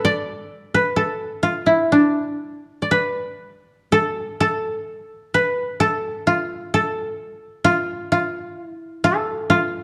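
A dark, warm production set in a moderate recital-hall reverb frames this short excerpt of austere, still Japanese traditional music, moving in a free rubato around 58-67 BPM in 4/4 and drawn from the D kumoi scale. A solo acoustic koto, played up front with fingerpicks, carries the whole piece, its mellow, woody tone staying between D4 and D5. The playing shifts into a new section at 3.9 seconds and continues until the cut at 9.8 seconds.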